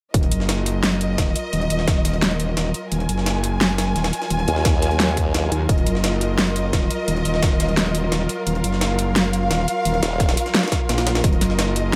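A straight 4/4 pulse at 173 BPM drives this tense, aggressive slice of dark technical drum and bass in Eb minor, cut from a longer piece and resting on a single Ebmadd9 chord. Two layered drum kits run throughout: an up-front dubstep kit with a huge snare and metallic hats, and a sampler-style breakbeat kit, pitched up and gritty, with a high-tuned snare and high-pass filtering on its hats and snare. A punchy, tape-warm electronic kick sits up front but appears only in bursts, from 0.1 to 1.9 s, 4.7 to 7.5 s and 10.2 to 11.3 s. Underneath, a saturated FM wobble bass growls from Eb1 to Eb2 with chorus, overdrive and sidechain pumping, and a sawtooth formant-sweep wobble bass cuts in briefly around 4.5 s and again at 10.0 s. Above it all, a lush symphonic string section holds bowed, expressive chords with vibrato and soft attacks, pumping against the sidechain. Light reverb and a digital ambience surround the mix.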